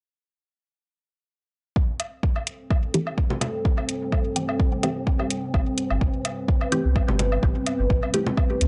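Gritty, dry and tape-dulled, this hazy, deep dub techno fragment at 127 BPM in A minor sits on a single Am7 chord, with an overdriven kick up front and metallic hi-hats arriving around 2.0 seconds alongside overdriven woodblock and congas carrying dub echo. A filtered chord stab with a plucky, detuned edge sweeps through its filter and trails dub echo, while a moody analog pad with chorus and phaser and an airy, breathy wind-like noise texture in the background both breathe with sidechain pumping. A round, soft sub bass joins at 5.5 seconds to deepen the low end.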